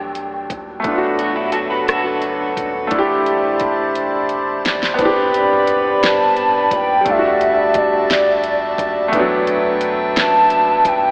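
A dreamy, reverb-soaked mix with a hazy AM-radio tint frames this short cut from a slow, late-night R&B piece in 6/8 at 58 BPM, its yearning mood carried by a clear, intimate grand piano with audible action noise and a reedy, breathing pedal harmonium holding sustained chords up front. Under them sit a round, dark fingered electric bass deep in the background and an electronic R&B kit with a knocking kick, fat snare, metallic hats and rim clicks, which plays a fill from 4.0 to 5.0 seconds. A slightly broken-up electric guitar with tremolo adds a brief picked second line from 1.2 seconds, and the hollow, woody clarinet-like synth lead, soft and sustained with chorus, delay and vibrato, returns from 6.1 seconds to carry the melody over Am11, Em11 and Gmaj9 harmonies.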